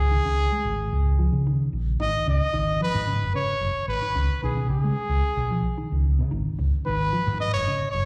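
A warm, up-front pop-style trumpet solo with slapback echo leads this intense, defiant afrobeat fragment at 111 BPM in G# dorian, carried by a round, dark hollow-body short-scale electric bass played with the fingers and a clean, mellow electric guitar spinning arpeggios through analog chorus and slapback echo, all heard as a live gig through the venue's PA with recital-hall reverb as the harmony moves from C#sus2 into G#m7 and C#7(no3).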